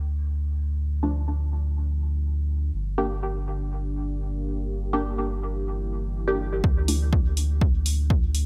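This short cut from a longer dub techno piece opens on a soft, round sub bass, with a deep, dark ambient pad rising slowly from 0.9 seconds on sustained chords that move from D minor to G minor. Muted, detuned chord stabs arrive at 1.0 seconds, their filter plucks coloured by chorus, phaser and a cassette-tape haze and trailed by dub echo, while filter sweeps shape both the stabs and the sawtooth pad. The bass, pad and stabs all breathe with sidechain pumping, giving the hypnotic, cavernous mood a steady pulse even before any drums appear. At 6.6 seconds the harmony returns to D minor and a punchy, tape-warm analog kick drops in up front, joined shortly after by a hi-hat. The mix itself stays dry, so the depth comes from the pad's own reverb and the stabs' echo.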